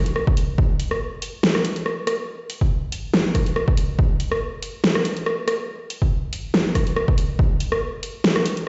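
A swung, half-time 4/4 groove at 141 BPM drives this chaotic, menacing dubstep excerpt, where an up-front, overdriven drum kit of bright hi-hats, rim clicks and a huge snare runs from 0.1 to 8.6 seconds over a punchy, layered electronic kick that drops out at 7.5 seconds, both re-recorded in a small room and then played back through a big sound system in a bare space, with a large studio reverb and a top end that stops at 7.9 kHz.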